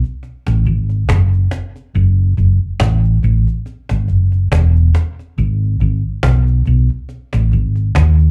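A relaxed 70 BPM lovers rock reggae groove in 4/4 with a light 16th-note swing sets a bittersweet, longing mood in F# dorian, as a snappy, close cajon struck with hard hands opens the clip and a dark, round hollow-body short-scale electric bass joins at 0.5 seconds, sitting up front and ranging from E1 to D#2, all heard through a venue's PA with club reverb in this short cut from a longer piece.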